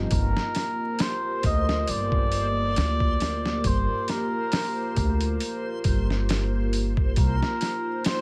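A cup-muted trumpet carries the melody in this smoky, hypnotic trip hop excerpt, its soft, veiled tone sitting up front yet sounding distant and roomy through a tape echo as it moves between Bb4 and Eb5. Underneath, a gritty, pitched-down boom bap kit with a thumpy kick, medium-tuned snare and hi-hat plays at 68 BPM in 4/4 with a light swing on the sixteenths, while a woody, pizzicato upright bass with gut strings holds the low end from G1 to D2 before dropping out at 7.4 seconds. A nostalgic, warbling pad of detuned square and triangle tones with a sub octave sustains chords with chorus and built-in reverb, and a reversed, granular swelling texture hovers dreamily on C5 in the background. The harmony rests on Gm7 in G minor, shifting to Cm11 at 7.2 seconds. Vinyl crackle runs through the dry, close-sounding mix.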